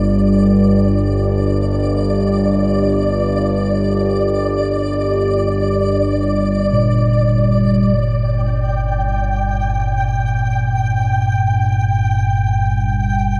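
Dark ambient drone in free time and G minor, tuned to A4 = 441 Hz, this unsettling excerpt from a longer piece sits in a cathedral-like reverb with a 5.9-second tail, where an up-front analog drone, sawtooth and pulse-wave with pulse-width modulation and chorus, holds the low register and gradually evolves. High above, a flickering, grainy triangle texture fades in over the first 8.0 seconds, detuned and drenched in shimmer reverb, while a bronze singing bowl struck with a felt mallet rings out mellow, metallic arpeggios with slow beating and delay in the background until 12.5 seconds. From 8.0 seconds the harmony drops away and a filter sweep moves across the drone, pushing the darkness further.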